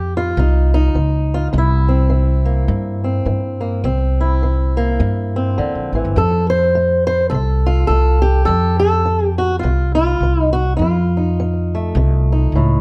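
A boxy, fingerpicked acoustic guitar carries the melody up front with slapback echo, swinging through this gritty, swaggering excerpt of acoustic country blues at 104 BPM in 4/4. A woody, growly pizzicato upright bass sits close beside it, playing the full 12.8 seconds as the harmony moves from F5 to C7 at 1.5 seconds and on to F7 at 6.2 seconds. The production is dark and dry, with little reverb.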